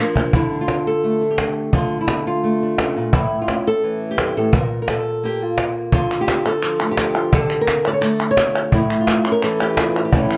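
A bright, fingerpicked flamenco guitar with fresh strings carries the melody up front in this passionate, dramatic flamenco excerpt at 172 BPM in 4/4, moving between D minor and A with a chordless stretch from 4.5 seconds. A snappy cajon with snares sits close alongside it in a live room, while crisp, band-limited palmas hand claps with a vintage character appear in a brief burst during the opening fill and return from 6.1 seconds. The production is dark overall, with moderate studio reverb.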